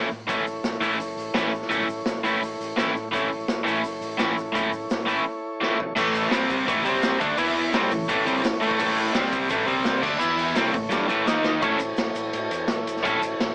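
Squeezed through an AM-radio filter and a moderate club reverb, this swaggering, raw garage rock excerpt is led by a bright, double-tracked guitar riff that sits up front with a crunchy, picked bite. A saturated, gritty drum kit with a punchy kick and a pumping small-room sound drives the straight feel and breaks into fills at 5.6 and 10.9 seconds, while a reedy vintage combo organ holds overdriven sustained chords with light vibrato. A round, amped fingered bass and a grainy egg shaker sit in the background.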